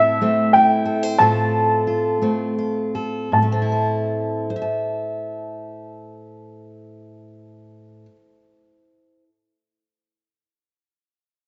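Reflective and intimate, this short fragment of a longer acoustic folk piece moves in a slow, straight 6/8 at around 51-64 BPM in A minor, tuned slightly below standard pitch. A dark, mellow upright piano carries the melody up front, its woody, natural tone sitting in a high register from E5 to A5 until it stops at 8.0 seconds. Beneath it, a fingerpicked steel-string acoustic guitar with a full-bodied dreadnought sound provides accompaniment across a broad range from A2 to A5, continuing alone until 9.4 seconds. The harmony rests on A minor, shifts to F over A, and returns to A minor as the second section begins at 3.3 seconds, with the opening passage slowing down before that point. A moderate plate reverb lends a lingering tail, while the top end is cut above 7.9 kHz, keeping the sound close.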